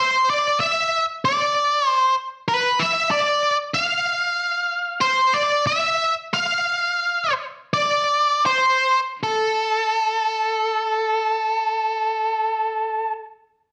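In a straight 4/4 that sits between 76 and 96 BPM and slows from 3.8 to 9.2 seconds, this cathartic, cinematic rock excerpt in A minor puts a dark, picked octave-fuzz electric lead guitar up front, carrying the melody between A4 and F5 with distortion and slapback echo inside a large, wet studio reverb, before a new section arrives at 9.2 seconds.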